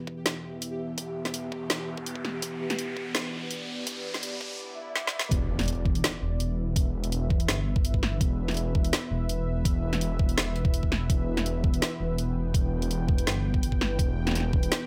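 Over a half-time groove, this dark, spacious drum and bass excerpt opens with a moody, evolving analog pad with sidechain pumping and a mellow, pulsing gated texture in the background, while a filter sweep, an electronic riser and a swell build toward a short drum fill. The drop lands at 5.3 seconds with an impact and a deep, rumbling detuned saw bass that sits up front. Present from the opening moments, a knocking, overdriven electronic kick and a layered kit with a woody snare and bright hi-hats drive the track to its end at 14.9 seconds.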